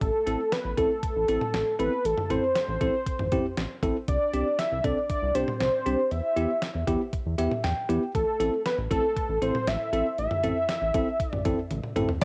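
A thick, bold unison lead carries the melody in this melancholic, cool synth-pop piece, its detuned sawtooth and triangle layers with a sub octave sitting up front and colored by cassette tape, analog delay and plate reverb. Underneath, a chorused synth bass blends pulse-wave and sawtooth tones with pulse-width modulation and a filter pluck, sounding glossy, retro and dark. A detuned 8-bit digital drum machine keeps a straight 4/4 at 118 BPM with a thumpy kick, medium-tuned snare, hi-hat, toms and crash cymbal. Its sampler-style hits are re-recorded in a large room, run through cassette tape, and close on a drum fill at 11.7 seconds. A bright, bell-like tine electric piano enters at 0.3 seconds with clean, direct accompaniment and adds a fill at 7.1 seconds, treated with cassette tape and plate reverb. The chords move from Am to Csus2 and Em, then back to Am, in a home cassette recording with moderate studio reverb, cut from a longer piece.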